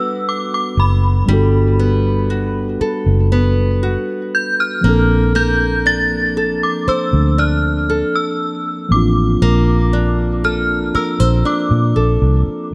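Set in a digital ambience, this smooth, romantic R&B excerpt at 59 BPM pairs an up-front, chiming FM synth melody, vintage and warbling with ensemble chorus and tape echo, with mellow, clean tine electric piano chords and bright, fingerpicked nylon-string guitar arpeggios with finger squeak and tape echo, while a dark, round, foam-muted electric bass enters punchy and forward at 0.8 s under a move from Gmaj9 to Bbmaj9 at 4.8 s.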